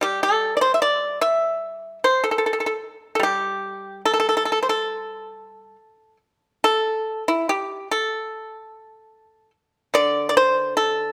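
A solo pipa, plucked with fingerpicks and sitting up front with a percussive, dry attack under light reverb, moves in free, rubato time through an elegant, longing Chinese traditional passage cut from a longer piece, shifting into a new section at 6.6 seconds before the fragment ends at 11.1 seconds.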